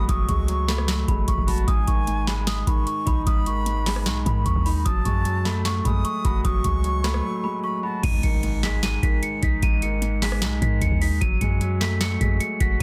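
Hard-hitting and dark, this half-time trap excerpt in G# phrygian at 151 BPM sets a bell-like, low-passed celesta melody with tape echo over a clear baby grand piano, an airy flute second line with vibrato that ends at 8.0 s just after a brief break, a boomy sine 808-style bass, up-front booming analog drums with a deep kick, crisp snare and metallic hats, and a very quiet electronic impact at 8.0 s, all in a dry, dense, heavily limited mix.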